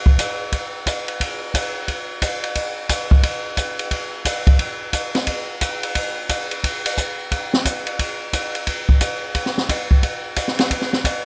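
A dry, up-front recording of an open jazz drum kit, boomy in the kick with dark cymbals and a high-tuned snare, swings at 177 BPM in 4/4 with a moody, cool feel, hi-hat, ride cymbal, snare and kick playing alone from 0.1 to 11.1 seconds in this short cut from a longer piece.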